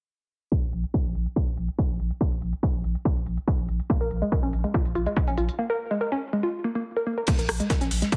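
Hypnotic and driving, this cut from a longer peak-time techno piece runs at 142 BPM in a straight 4/4, set in Bb minor with a slightly flat tuning. A punchy, up-front electronic kick anchors it from 0.5 seconds alongside a layered techno kit with smooth hats, crash cymbal and rim click, both carrying a tape-like glow from being re-recorded in a small room. Beneath them, a thick, saturated sine sub bass holds Bb1 with overdrive, sidechain pumping and a low-pass filter, while a filter sweep runs through the opening stretch and a break arrives at 5.6 seconds. At 3.9 seconds a woody, wave-folded pluck enters with a dark, percussive riff between Ab3 and Bb4, colored by a noise layer, a moving notch, chorus, overdrive, pumping and digital delay. Near the close, at 7.3 seconds, an acoustic soul kit slips in with dusky ride and a medium-tuned snare, its top rolled off, its cymbals, snare and room high-pass filtered and its cymbals pumping, all under light digital ambience and a heavily compressed, radio-like low-passed finish.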